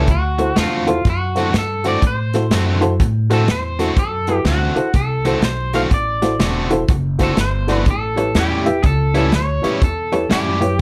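Light reverb and a polished, airy studio room frame this swaggering, soulful electric blues shuffle, cut from a longer piece, with a swung feel. A twangy, slightly broken-up electric guitar carries the melody while a bright, overdriven electric guitar picks out the riff beneath it. A slightly detuned vintage upright piano with long sustain fills in the accompaniment, a thumpy gut-string upright bass plucks the low end, and an up-front acoustic kit drives hi-hat, medium-tuned snare and punchy kick as the harmony moves from D7 to A7 at 7.9 seconds.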